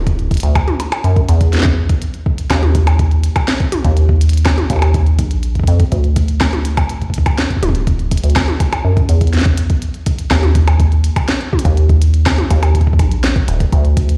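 A rubbery, resonant acid bass opens this playful, glitchy IDM fragment, its dark square-wave tone sitting up front with a fast attack, decaying notes and a filter sweep. A deep electronic kick arrives at 0.1 seconds alongside a glitchy kit of clicky hi-hats, a tiny snare, toms and percussion blips, the kit washed in tape echo. The whole piece sounds as if played on a big sound system in a bare room, bathed in large studio reverb, in a steady 4/4 with a straight feel.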